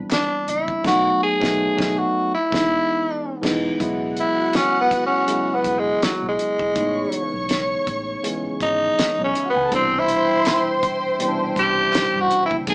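Lush 1970s-style soul with a smooth, warm mood, cut from a longer piece, where a raspy, growling tenor saxophone sits up front and takes a solo from 3.8 seconds over a worn, slightly out-of-tune tine electric piano played through a combo amp. A damped 70s drum kit with a fat snare and tight kick and a round, foam-muted fingered electric bass in the background carry the band accents, hollow group handclaps return very quietly near the end, and a dark, woody studio string section adds a second line from 3.8 seconds. A clear symphonic string section joins with sustained chords at 9.7 seconds, all heard in a small, wet room with a small-speaker sound, as if the band were playing live together.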